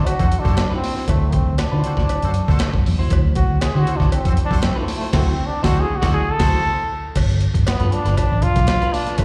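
This playful, gritty funk excerpt moves at 118 BPM in a straight 4/4, sitting in D mixolydian over a D9 chord before shifting to G9 at 7.2 seconds. A bright, punchy trombone takes a solo with light vibrato and a vintage pop flavour until 7.2 seconds, carrying the melody with a slapback echo throughout the excerpt, while a clear horn section hovers in the background as a second line, dropping out at 6.5 seconds. Underneath, a clean, picked electric guitar adds accompaniment with its own slapback, and a dark, foam-muted fingered bass gives a round, amped bottom. The sampler-style breakbeat kit sits up front, compressed and tape-tinged, with a thumpy kick, medium-tuned snare, hi-hat and crash, joined by a metallic, close and dry cowbell in the background. The band punches an accent from 5.1 seconds, and the whole thing sounds like a live gig heard through a venue's PA with a touch of recital-hall ambience.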